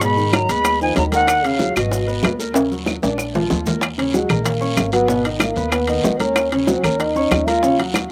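A sultry, driving Afro-Cuban jazz piece in Eb minor at 189 BPM opens with an airy, up-front flute carrying the melody with vibrato and a crisp, chiffy attack, over a breathy trombone second line, natural-sounding grand piano and dark, woody pizzicato upright bass, with slapback echo on both horns. Ringing metal-shell timbales and raspy guiro sit close and dry, while round low-tuned bongos, thick-skinned congas, grainy maracas and saturated claves that join at 0.3 s fill out the background. The flute stops at 2.4 s, a drum fill follows, and from 3.8 s the trombone takes a whispered, intimate solo through the end of this cut from a longer piece.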